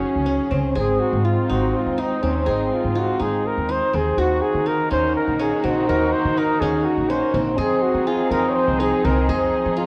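Contemporary instrumental chamber music in 7/8 at 246 BPM in eighths, hopeful and shimmering, with a mellow, soft-attack flugelhorn singing the melody over a French horn's warm second line with light vibrato, veiled con sordino strings holding background chords, bright plectrum-plucked qanun arpeggios, and a woody, thumpy pizzicato upright bass entering at 0.2 seconds, all moving from Gbsus2 through Ab and Ebm to Fm7 in a moderate recital hall reverb colored by warbling, worn cassette tape pitch drift, cut from a longer piece.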